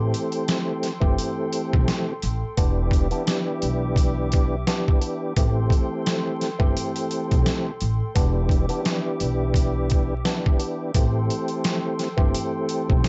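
Boom-bap hip-hop with a tough, reflective mood and a swung 16th-note feel, built on a gritty, pitched-down sampler-style drum kit with a thumpy kick up front, a growly pizzicato upright bass, a clean percussive tonewheel organ with chorus vibrato and a stopped rotary speaker, and a hollow, flute-like pad held softly underneath in plate reverb, the whole recording carrying vinyl crackle and a dulled top end.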